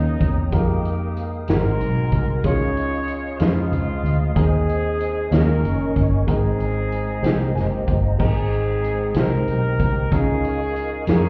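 Heard as if muffled through a wall with a touch of club reverb, this slow, reverent gospel fragment in Ab major moves at 62 BPM in a straight 6/8, with a soulful horn section carrying the melody in a distant, roomy blend with light vibrato. A brilliant, woody upright piano accompanies with short sustain and adds a fill from 7.2 to 8.2 seconds, while a soft, flute-like tonewheel organ holds chords in the background through a fast rotary speaker with chorus vibrato and key click. Underneath, a foam-muted, round electric bass sits dark and punchy up front, and a big-band drum kit entering at 0.2 seconds brings a boomy kick, medium-tuned snare, hi-hat and crash with a rolled-off top.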